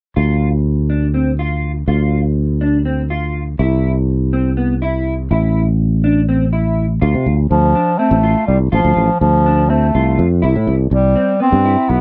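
Tense and driving, this progressive instrumental cut from a longer piece moves in 7/8 at 245 BPM counted in eighths, centered on D dorian. A mellow, dark electric guitar plays clean fingered arpeggios through analog chorus beneath a growly, punchy fretless bass that sits up front, with chords moving from Dm through C and A5 to Dm7 and Cmaj7. At 7.5 seconds a clear, soft-attacked bass clarinet enters with a classical-style solo melody, all in a dry, close 1970s-style studio sound with light reverb.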